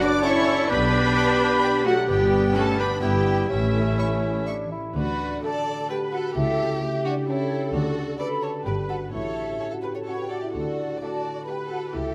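A clear, intense chamber violin section carries the melody of this playful, whimsical film cue in D major, moving at 128 BPM in a straight 3/4 with a mischievous, quirky character. Around it, a hollow flute ensemble, an expressive second violin section, a mellow cor anglais and a background clarinet weave second lines, while a focused viola section, a vintage-toned bassoon and a French horn section holding sustained chords fill the middle. Ringing, thumb-plucked harp arpeggios run throughout, over a lush cello section and a bowed double bass section that share the bass. The cor anglais, clarinet, bassoon and horns drop out by 5.0 seconds, when a marimba with medium mallets joins the violins on the melody as the harmony lands on D. The sound is close and detailed, set in a moderate scoring stage reverb, and the cue is cut from a longer piece.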